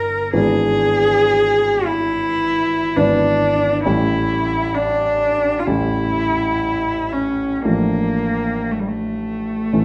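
A rich, smooth bowed cello sings a melancholic, yearning melody with vibrato over warm grand piano accompaniment in this brief romantic classical fragment in 4/4, both up front and moving with an unhurried rubato through E7/G#, A7 and Dm/A, set in a moderate recital hall reverb.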